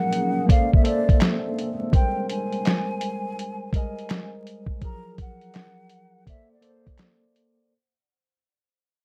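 Dreamy and mellow, this short excerpt of lo-fi hip hop moves at an unhurried 83 BPM in 4/4, with a swung sixteenth-note feel and a fade-out running through its whole length. A breathy concert flute carries the melody between C5 and Bb5, its hollow tone, vibrato and crisp attack trailed by tape echo. A clean tine electric piano sits up front as accompaniment, sounding through its built-in speakers, while a blurred, evolving granular pad drifts in the background with its own reverb until it drops away at 1.9 s. The muffled, pitched-down sampler-style drum kit enters at 0.1 s with a thumpy kick, medium-tuned snare, hi-hat and handclaps, compressed and prominent in the mix. The harmony glides through lush major ninth chords, from Bbmaj9 to Abmaj9 and Gbmaj9 before returning to Bbmaj9, all framed by a dark production with a small room ambience and vinyl crackle.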